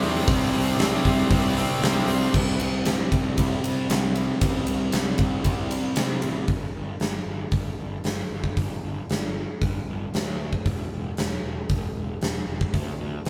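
Anthemic and bittersweet, this quiet-loud alternative rock passage at 115 BPM opens with a double-tracked overdriven electric guitar and two thick fuzz guitars riffing over a growly, overdriven fuzz bass and a huge arena drum kit with a punchy kick, fat snare and bright cymbals, before a slightly broken-up guitar through a small old amp plays arpeggios from 2.3 s, and the bass and drums carry on alone from 6.5 s in a big, roomy live-band sound.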